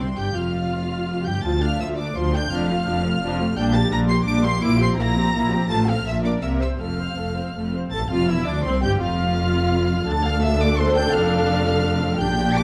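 High, intimate violins carry the melody with light vibrato and a soft sul tasto touch above a second violin line, while focused, smooth-topped violas, lush, expressive cellos and distant double basses fill out this lively, cheerful classical-period movement for string orchestra in a rubato 3/4, heard in a moderate scoring-stage reverb beneath a layer of vinyl crackle across a 12.6-second cut from a longer piece.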